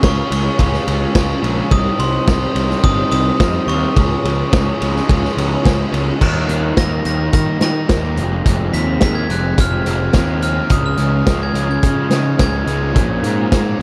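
Glockenspiel struck with hard plastic mallets rings out a sparkling, tape-echoed melody over two picked overdriven guitar riffs, one crunchy with spring reverb and one compressed and chorused, while a growly fuzz bass and a punchy, dark-cymbaled vintage drum kit sit up front and a very quiet detuned sawtooth pad sustains chords beneath, giving this jangly, wistful indie rock excerpt at 107 BPM in Db lydian an echo-heavy, dry sound, with the glockenspiel taking a solo from 6.2 seconds as the chords move from Eb through Fm to Bbm.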